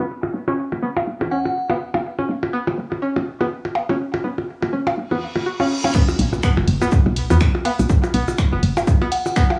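A swung 16th-note groove at 123 BPM in 4/4 drives this clinical, hypnotic minimal techno excerpt, with overdriven percussion blips up front and a woody, round FM bass pumping under sidechain and tube saturation. A nasal, twangy string-like resonator pluck riff with chorus and delay moves through a filter sweep over a Bsus4 chord, while a crystalline synth bell chimes briefly near the start and end. A reverse cymbal in the background rises into the drop at 5.9 s, where an electronic impact lands, the harmony settles on B5, and a punchy, tape-warm kick arrives with a quieter analog drum machine of crash, ride, hi-hat, shaker and finger snaps, all colored by a lo-fi cassette haze and light reverb.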